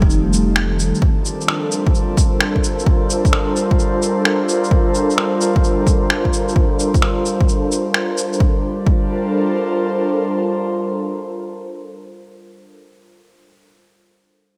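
A swung 130 BPM future garage groove in G minor opens this ghostly, rainy excerpt, with a punchy, overdriven electronic kick up front alongside muffled, pitched-down shaker and finger snaps; the shaker and snaps stop at 8.4 seconds, and the kick drops out at 9.0 seconds. At the start, a deep, round sub bass and a mellow, clean tine electric piano, pumping with phaser and delay, sound briefly over an F9 before the harmony moves to Gm11. An airy, breathy, detuned pad with chorus and a slow attack sustains its pumping chords in a lush hall until 12.8 seconds.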